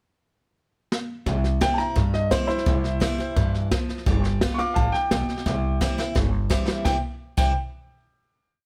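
Rockabilly at 172 BPM in C major, retro and upbeat, opens with a brushed drum fill at 0.9 seconds before the dark, boomy kit settles into a train beat groove under a woody, thumpy pizzicato upright bass playing two-beat root and fifth lines with walk-ups, a bright, boxy parlour acoustic guitar alternating bass and strum with bass runs and finger squeak, and an up-front vintage upright piano carrying a lick-based theme that returns over C and G7, all in light reverb, before a second fill leads to the final chord at 6.9 seconds.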